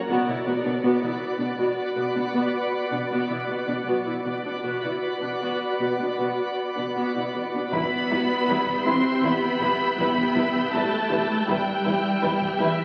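A bright, twinkling granular texture sits up front with an octave-up shimmer, holding slow-blooming sustained chords over a tense, ominous suspense cue in 5/4, while a rich, focused violin section carries the melody with lush vibrato above dark violas, warm cellos and woody double basses in the background. Distant high violins add a shadowy upper layer, and at 7.7 s a second, close violin line enters alongside a taiko ensemble struck with hard sticks, deepening the menace as the harmony moves from Bm to Em. The whole fragment sits in a wet scoring-stage reverb and carries the crackle of a very old 78 rpm record.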